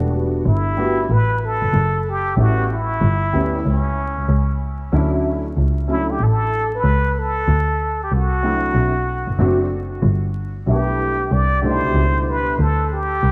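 A 94 BPM groove in 4/4 with a 63% swing on the sixteenths drives this smoky, nocturnal jazz-hop cut, where a rich, bowed double bass hums smooth and close up front beneath a woody upright piano washed in ensemble chorus, while a plunger-muted trumpet enters at 0.5 seconds with wah-wah, vibrato and scooped notes in a jazz-style solo trailed by diffuse ambient delay, all through a dreamy plate-reverb haze and vinyl crackle over chords moving from Em11 through A9, Dmaj9, D7 and G6 to D7(no3).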